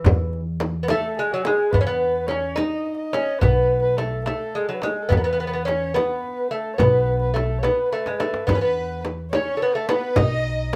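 Hypnotic and longing, this short cut from a Persian modal ensemble piece moves at 71 BPM in a straight 6/8. A delicate, fingerpicked gut-string lute carries the melody up front with its doubled strings, over a woody pizzicato upright bass, a deep tombak in the background and a small, bright, dry frame drum. A dark, bowed kamancheh with vibrato and portamento enters as a second line at 0.9 seconds, a drum fill arrives at 7.9 seconds, and a soft-attack chamber violin section, played sul tasto, joins at 8.5 seconds, all in light reverb.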